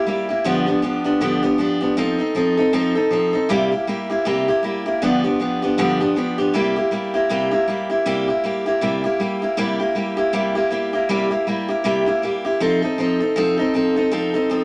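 A lone picked steel-string acoustic guitar opens this rowdy, rollicking rock excerpt, its warm, up-front concert tone swinging through a bluesy run of dominant seventh chords as the phrase repeats from 6.5 seconds, all set in a wet studio reverb.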